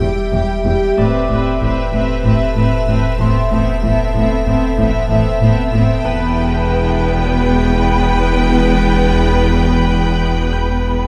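Cinematic suspense score in E minor at 94 BPM, mysterious and tense, its bowed strings moving from E minor to an A add9 chord over an E bass and back. A lush violin section carries a soft-edged, expressive melody high above distant, vibrato-rich violas, while deep cello and double bass sections anchor the low end alongside a clean sine sub-bass drone on E. An icy, crystalline glass pad with chorus holds sustained airy chords, a ringing concert harp sparkles quietly in the background, and a moderate recital-hall reverb surrounds the whole ensemble.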